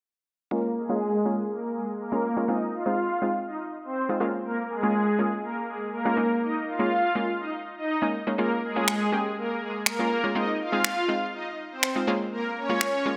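A straight 4/4 pulse at 122 BPM drives this dance-pop passage in Bb minor, tuned to A4 = 441 Hz, and its mood is driving yet bittersweet. A lush, detuned supersaw pad carries the melody from 0.5 s, its airy sawtooth layers blooming slowly through low-pass filtering and digital delay. Beneath it, a round, warbling analog pluck with a vintage character supplies bright, fast-attack, decaying accompaniment, colored by chorus and a low-pass filter. A filter sweep runs through the whole passage over a cycle of Bbm7, Ab6 and Eb7sus4. Layered electronic finger snaps arrive up front at 8.9 s. A moderate digital room reverb places the parts in a shared space, and the passage is cut from a longer piece.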